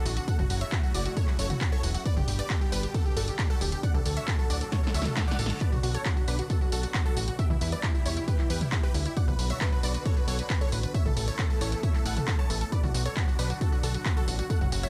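A huge, euphoric supersaw lead carries the melody through this bittersweet, driving uplifting trance passage at 135 BPM in B minor, its detuned sawtooth voices sounding bright and compressed under a phaser, a moving notch, digital delay and sidechain pumping. Behind it, a unison pluck plays a second line with a fast, decaying attack, built from sawtooth, sine, triangle, a sub octave, a noise layer and ring modulation, shaped by a filter sweep and also sent through delay. A lush, thick unison pad sits in the background holding sustained chords with a slow attack and long release, its warbling chorus and vintage 12-bit sampler grit pumping against the beat. Up front, a punchy, funky analog bass with a sawtooth and square-wave filter pluck drives the low end, while a heavy, layered electronic kick re-recorded in a large room anchors the straight 4/4 pulse alongside a dry analog drum machine of handclaps, hi-hat, punchy snare, tambourine and toms. 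The harmony moves through chords such as F#m7, G, D, Bm, Em and Aadd9, and a drum fill from 4.7 seconds meets a brief reverse cymbal at 5.1 seconds just before the Bm arrives, all in a dry mix with little reverb.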